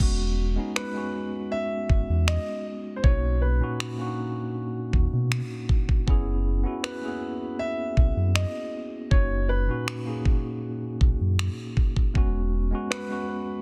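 A dry, dense and heavily limited sound frames this tender, romantic contemporary R&B excerpt, where an up-front electronic drum kit with a knocking kick, finger snaps, crash cymbal and gritty 12-bit sampler texture with soft clipping on the snare sits over a deep, sustained sine sub bass with an added octave, a clean tine electric piano carries the E6, Bmaj7 and F#7sus4 chords, and from 0.8 s a dark, mellow, boxy grand piano sings a melody through digital delay.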